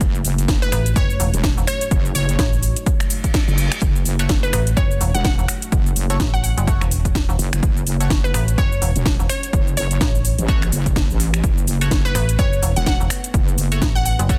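Gritty and aggressive, this bass house excerpt with a swung sixteenth-note feel drives on a punchy, overdriven kick and a cracking, metallic-hatted house kit of snaps, shaker and snare, both re-recorded in a large room, while an up-front saturated wobble bass and a metallic FM bass pump beneath a glassy, crystalline wavetable pluck melody entering at 0.6 seconds, a nasal band-passed chord stab with phaser arriving in the background at 4.2 seconds, a brief reverse cymbal at 3.1 seconds, and a very quiet, moody ambient pad holding sustained chords throughout a dense, heavily limited mix.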